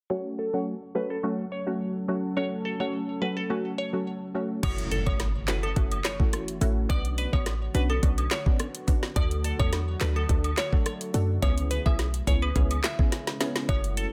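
A straight 4/4 dancehall groove at 106 BPM in F# minor, bouncy and hypnotic, opens with a crystalline wavetable pluck carrying the melody over nasal, detuned chord stabs pumped by sidechain, joined at 1.1 seconds by a deep, moody pad sitting in the background, as a filter sweep builds through the opening. At 4.6 seconds an up-front electronic drum kit with knocking kick, woody snare and metallic hats arrives alongside a tight, sine-based 808-style bass and a distant woodblock and cabasa, while an impact sounds in the background until 6.9 seconds. The chords move from F#m through Bmadd9 and D to C#m7, a drum fill arrives at 13.1 seconds in this excerpt of a longer piece, and the dense, heavily limited master keeps the sound dry.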